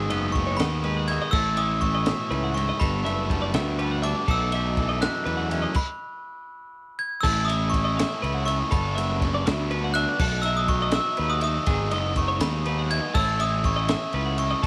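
A sparkling, bell-like glockenspiel played with brass mallets carries the melody through this bright, playful math rock and midwest emo excerpt, its slapback echo ringing over a 6/8 pulse at 81 BPM in A lydian. Around it, a bright, compressed twelve-string electric guitar spins arpeggios, a double-tracked, biting overdriven guitar plays a riff, and a clean, twangy electric guitar sits in the background until it drops out at 5.8 seconds, just as a stop briefly halts the harmony before the second section begins at 7.2 seconds. Underneath, a growly fuzz bass sits up front, while a compact cocktail drum kit with a high-tuned snare, punchy kick and dark cymbals plays in a small, ambient room.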